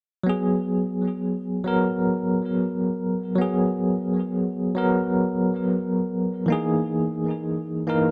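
The recording sits in a moderate echo-chamber reverb with a 2.1-second tail, and the echo-heavy mix has its top end rolled off above 10.7 kHz. This smoky, brooding trip hop fragment moves at 77 BPM in 4/4, with a lazy 56% swing on the sixteenths, in G# minor. A barky, bell-like tine electric piano sits up front and carries the accompaniment from 0.2 to 8.1 seconds, spanning E3 to A#4. Tremolo, tape echo and a gritty 12-bit vintage sampler texture colour its tone. The harmony rests on G#m7 before shifting to Emaj7#11 at 6.5 seconds, adding a shadowy lift to the closing moments of this short cut from a longer piece.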